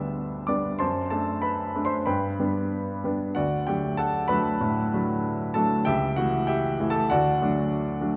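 A clear baby grand piano leads this short romantic character piece for solo piano, its tone present and up front as it spans from C#2 to E6. The mood is stormy and passionate, with a rubato feel around 96 BPM in 4/4. The harmony moves from G through D7/F# and back to G, settles on D at 3.4 seconds, then passes through A7/C# to close on D. A wet concert hall reverb with a 2.0-second decay surrounds the instrument, lending the sound a spacious, resonant setting. The 8.2-second passage is cut from a longer piece and stays within a single section throughout.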